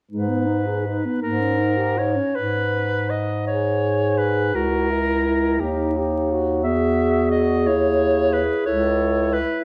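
Through vinyl crackle and a moderate recital-hall reverb, this brief fragment of a yearning, solemn classical piece for single-reed quartet unfolds in a rubato 6/8, with a clear, up-front soprano saxophone singing the melody over a mellow, softly attacked alto saxophone's second line, a dark, distant clarinet accompaniment and a vintage-toned bass clarinet anchoring the bass up front.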